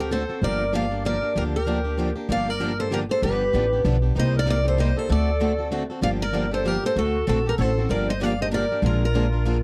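Acoustic string swing in G minor at a brisk 193 BPM in 3/4, this virtuosic, swinging excerpt sets a bright, up-front picked steel-string guitar melody with audible finger squeak over a sweet, reedy accordion second line with light tremolo tuning, a plugged-in swing-style guitar with fresh strings in the background, a boxy parlour guitar entering at 0.1 seconds, and a woody, thumpy pizzicato upright bass on gut strings, all captured in a dry, close 1970s-style studio sound as chords move from Gm7 through G7, Cm7 and D7 to a closing Bb7.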